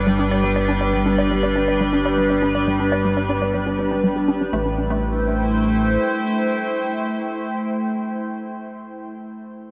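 An evolving, morphing wavetable pad sits up front with bright sustained chords through phaser and shimmer reverb, over a fat sawtooth analog bass, a hollow, bouncy square pluck riff in the background with lush chorus and tape echo, and a very quiet pulsing gated texture, in this cosmic, hypnotic stretch of ambient, sequencer-driven space music at 121 BPM in A minor, drenched in cathedral reverb as a filter sweep runs on the arpeggio until 4.5 s, where the harmony shifts from G to Am7.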